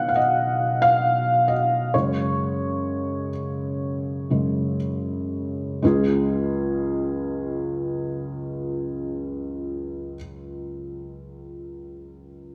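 Set in a wet recital-hall reverb, this slow, hopeful and emotional pop excerpt features a single felt-muted upright piano, mellow and intimate with thick felt and audible action noise, sitting up front as it plays alone and slows down through the first 5.8 seconds over Cb and Gbsus2 before settling onto Db.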